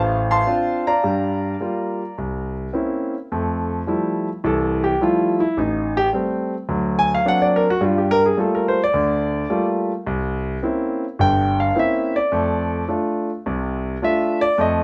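Solo jazz with a late-night, smoky mood, played by a lone concert grand piano in a swung 4/4 and tuned a little below standard pitch, at A4 = 437 Hz. The piano sounds warm and natural, sitting up front with a deep bass that reaches down to G1 and a top that climbs to C6, all set in a moderate studio reverb. Cut from a longer piece, it opens on Dm7 and moves through rich extended chords such as C7b9, Fmaj9 and Daug7, with the solo section beginning at 3.3 seconds and settling on F6 at 12.3 seconds.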